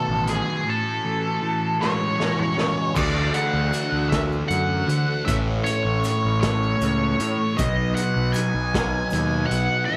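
An up-front octave-fuzz lead guitar sings a melody through wah, distortion and slapback echo over a double-tracked fuzz guitar riff with phaser, a round overdriven fingered bass, a saturated, gritty garage drum kit with a drum fill from 1.8 to 3.0 seconds, a soft flute-like tonewheel organ turning on a slow rotary speaker in the background, and a grainy egg shaker that joins at 3.0 seconds, all in a trippy, hypnotic psychedelic rock excerpt at 52 BPM in 6/8 moving from B7 and Amaj7 to Dadd9, A and B.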